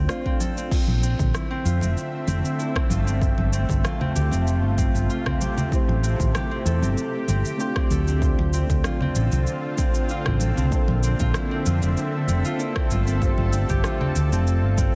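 Light digital ambience surrounds a dense, heavily limited modern master in this smooth, relaxed sunset chillout excerpt, set in a gently swung 4/4. A dark, hollow-body fingered electric bass sits up front beside a punchy, overdriven electronic kick. A tape-tinged R&B kit adds rim click, shaker and crash cymbal, with soft clipping on its snare, while hard-handed congas stay in the background. From the start, a bright, ringing concert harp plays fingerpicked arpeggios through digital delay. Mellow, round electric-piano-like synth keys with chorus, phaser and delay sound briefly at the opening and return at 5.7 seconds, and a shimmering, ethereal pad with octave-up sparkle and a warbling vintage character enters on a slow attack at 1.4 seconds as the chords move through Dm7, Bbmaj9#11, G9sus4 and Am7.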